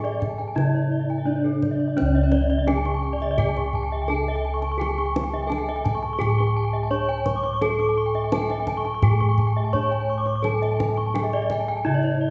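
A straight 4/4 pulse at 85 BPM drives this hypnotic, brilliant Balinese gamelan fragment in C# pelog, cut from a longer piece. A dark, smooth bronze metallophone carries the melody while two more horn-mallet metallophones spin arpeggios alongside it, one bright and the other with a vintage, band-limited tone, all three shimmering with the beats of paired tuning. Round, mellow bossed gongs struck with padded beaters sit up front on the bass line, a deep kendang stays close and dry, and the metallophones and gongs ring out into the reverb of a recital hall.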